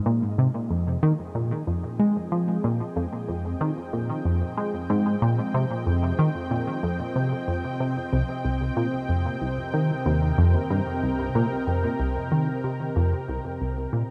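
A tight, nasal sequenced synth drives this ambient space-music excerpt, its detuned sawtooth and pulse-wave riff plucked through a filter, set up front with chorus and tape echo in the low register at a straight 93 BPM in F minor. Alongside it, a lush, thick unison pad holds sustained chords with slow attack and long release, shifting from Fm7 to Cm7 at 8.1 seconds. A huge ambient reverb gives the expansive, hypnotic passage its depth, while the pad fades in from the start and fades out from 11.6 seconds.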